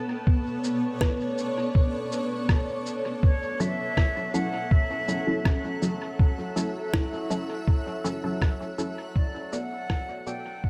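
A cloudy granular pad opens this deep, spacious ambient dub piece, holding blurred, detuned chords on Bm7 in B minor at 81 BPM in a straight 4/4, with its own built-in reverb. A muffled, pitched-down electronic kick thumps up front almost at once, joined by a compressed cabasa and rim click sitting low in a small room with dub echo, while a woody, hollow kalimba plucks short arpeggios in the background through tape echo. At 3.2 seconds the harmony moves to F#m7 and a close-miked, breathy silver concert flute enters with an expressive, straight-toned melody carried on dub echo. Alongside it, a bubbling, resonant stepped-filter texture drifts in with chorus and reverb, and moments later mellow, muted chord stabs add sub-octave pluck, phaser and lush chorus. The dark production carries light reverb, and the music begins fading out at 7.2 seconds, returning to Bm7 before this cut from a longer piece ends.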